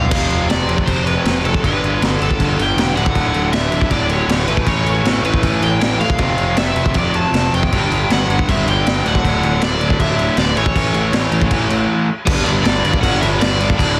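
A straight 4/4 punk rock drive at 158 BPM, this rowdy, upbeat cut pairs a crunchy overdriven lead guitar melody with a bright, double-tracked distorted guitar riff and a growly fuzz picked bass, while a raw garage drum kit with a high-tuned snare, boomy saturated kick and gritty crash sits up front in a small room, set in light reverb and a dense, heavily limited master as the chords cycle through F5, G, D and A before landing on G5 at 12.3 seconds.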